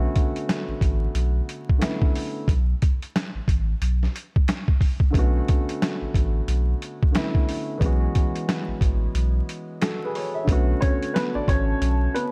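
Dark and warm with a layer of vinyl crackle, this short boom-bap hip-hop excerpt moves at 90 BPM in 4/4 with a swung sixteenth-note feel, sitting in B dorian with tuning just below standard pitch. A mellow baby grand piano with long sustain carries the accompaniment from the start, its tone softened by cassette-tape coloring and filtering, while a round, sine-like sub bass holds the low end up front. A gritty, compressed, pitched-down sampler-style drum kit enters at 0.2 seconds, pairing a thumpy kick with a medium-tuned snare and hi-hat, and a break arrives at 9.1 seconds. Shortly after, a woody, slightly detuned, vintage-sounding upright piano takes up the melody with tape echo, joined at 11.3 seconds by a moody analog pad with chorus and phaser sitting in the background. The harmony circles through Bm9, Asus2 and F#7sus4 before returning to Bm9, giving the piece a reflective, shadowy mood.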